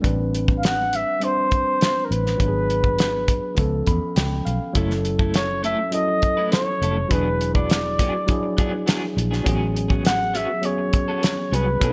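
Romantic, lush 1970s-style soul, where a mellow flugelhorn with vibrato and scooped notes sings from 0.6 seconds over a worn, slightly out-of-tune tine electric piano with subtle chorus, a dark, foam-muted fingered bass and an up-front, cloth-damped drum kit with a fat snare, the piano slipping in a fill at 3.6 seconds before a twangy, slightly broken-up electric guitar with tremolo adds a riff from 4.8 seconds, all set in light reverb.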